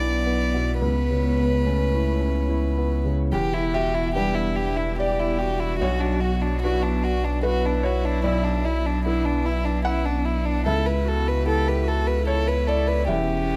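A rubato 3/4 pulse at 74 BPM carries this reflective, longing neoclassical piano-and-strings piece in E dorian, where a rich, up-front solo violin sings the melody with light vibrato and an airy sul tasto bow, a warm cello with a soft attack sits in the background on a second line, a felt-muted upright piano gives mellow, vintage accompaniment, a deep, round sub bass holds the low end, and from 0.7 seconds a very quiet, breathy pad with chorus and phaser sustains chords, heard in a close, detailed and nearly dry sound.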